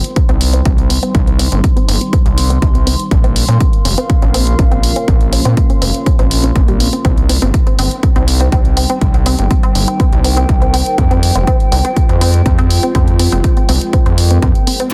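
A deep, moody sawtooth pad and a nostalgic, warbling lo-fi pad sit in the background with chorus and built-in reverb, joined by a muffled, tape-toned hi-hat that echoes in a large room. Within the first 0.3 seconds a heavy, layered kick drum arrives up front, along with a tight, detuned arpeggio carrying chorus, phaser, delay and a filter sweep, and a gritty, distorted sawtooth bass that pumps against the kick. This is melancholic, dark melodic techno at 122 BPM in C phrygian, tuned to A4 = 435 Hz, moving through Cm, Bbm and Fm in a dense, heavily limited mix.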